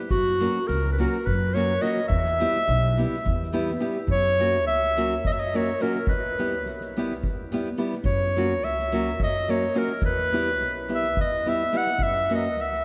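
A clear, up-front clarinet plays a solo melody in classical style over woody, thumpy pizzicato upright bass and a smooth, rolled-off soft-mallet drum kit with punchy kick and medium-tuned snare, joined at 0.4 seconds by small, dark fingerpicked nylon-string guitar, in a restless, bittersweet Balkan wedding-band fragment in 7/8 at 212 BPM counted in eighths, alternating between F# and Em chords, shifting from its opening section into a second at 4.1 seconds, and bathed in the long, echoing reverb of a vast cathedral.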